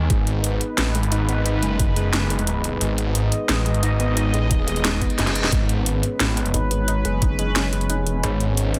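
Set in a light reverb, this short cut of dark, tense technical drum and bass runs at 177 BPM in G# phrygian, with a snarling, detuned saw bass growling up front beneath a sweeping, resonant pad and a soft, round pluck arpeggio that sits mellow in the background, both pumping against the sidechain. The overdriven drum kit brings a cracking snare and bright hi-hats, joined by a knocking electronic kick from 0.1 s. A reverse cymbal and drum fill arrive near 5.1 s before a nasal vowel-sweep wobble bass enters at 6.5 s.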